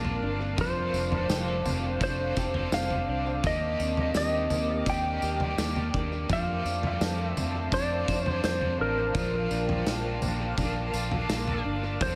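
A straight 4/4 pulse at 84 BPM comes from a loose indie drum kit with a punchy kick, a medium-tuned snare, tambourine and toms in a pumping studio room, its top rolled off and fed through analog delay. This is a blissful, dreamy dream pop passage in F major, cut from a longer piece, moving through Bbmaj7, F6, Ebmaj7, F6 and back to Bbmaj7 over 12.2 seconds. A dark, round, foam-muted fingered bass holds the low end, while a clean, hollow-body semi-hollow guitar plays arpeggios through analog chorus and delay, and a bright, biting overdriven guitar adds picked accompaniment with harmonic tremolo, subtle chorus and delay. On top, a twangy, compressed lap steel carries the slide melody between Bb4 and G5, echoed by analog delay. A cloudy, evolving granular pad with slow attack and long release sustains the chords in its own reverb, and an airy vibraphone with fast motor vibrato rings in the background until 12.0 seconds, all within a lightly reverberant, echo-heavy mix.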